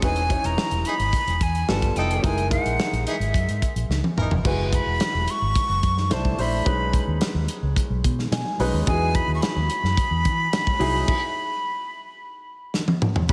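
Riding a straight 4/4 groove at 108 BPM, this bittersweet, urban slice of polished 1980s jazz-funk pop pairs an up-front studio drum kit, with its tight kick and medium-tuned snare, against a dark, round, foam-muted fingered electric bass, while a breathy, bright jazz flute with slapback echo carries the melody over clear grand piano chords touched with subtle chorus, a smooth, lightly vibrato horn section with tape echo sits in the background from 0.9 to 4.4 seconds, the piano takes a brief fill at 8.0 seconds, and a lush hall reverb gives the mix a big arena sound.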